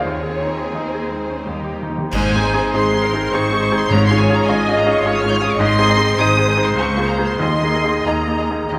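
Classical romantic music for piano and orchestra in a rubato 3/4, passionate and lush, in a brief cut from a longer piece where a clear, polished baby grand piano sits up front carrying the melody alongside a rich, smooth violin section, while a very quiet second violin line adds expressive vibrato. A distant viola section with portamento fills the accompaniment, and dark cellos and double basses hold the bass in the background, all bowed and set in wet scoring-stage reverb. Very quiet timpani with hard mallets enter with a fill at 1.5 seconds, and bright cymbals with concert bass drum mark an accent at 2.1 seconds before the music settles onto a suspended chord.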